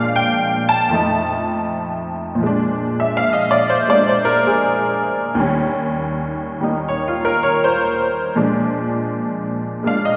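Swinging and relaxed, this short solo jazz passage is cut from a longer piece and moves at an easy 81 BPM in 4/4 with a lilting swing on the eighth notes. A lone honky-tonk upright piano carries everything, its detuned, jangly tone sitting present and up front, with a vintage character that suits the style. The piano ranges from a low Eb2 up to A5, and its solo stretch runs from 2.4 s to the close at 10.2 s. The harmony stays rooted in Bb mixolydian, moving through Bb7 and F7 before settling into a pass from Bb7 to Eb7 and back to Bb7. A lush recital-hall reverb with a 1.6-second decay surrounds the instrument, giving it the resonant sense of a church or concert hall.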